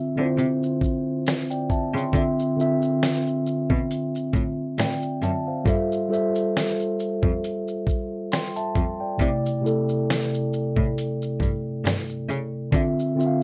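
Hazy and nostalgic, this lo-fi hip hop excerpt moves at a relaxed 68 BPM in D minor, with a gentle swing on the sixteenths. A mellow tine electric piano sits up front from the first moment, its clean tone heard as if through built-in speakers and softened by cassette tape and a low-pass filter. A clear, bowed cello carries the bass line with focused vibrato from a single close player, entering at 0.2 seconds and dropping out at 12.8 seconds. A dusty, sampler-style drum kit arrives at 0.4 seconds, compressed and gritty, with a thumpy kick, fat snare, hi-hat and shaker pushed forward in the mix. The harmony drifts from Dm9 through G13sus4 and C69 before returning to Dm9, all within a moderate studio ambience carrying a faint mains hum and the character of cassette tape.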